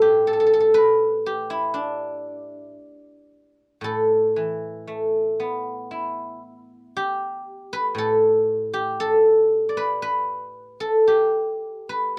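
A mellow, silvery guzheng played with fingerpicks rings out up front as the sole voice in this serene, elegant Chinese traditional solo, moving with an unhurried rubato at about 58 BPM in 2/4 across a range from A2 to D5, shifting into a new section at 3.8 seconds within a 12.2-second fragment cut from a longer piece, all captured in a dry, close 1970s-style studio sound touched by light reverb.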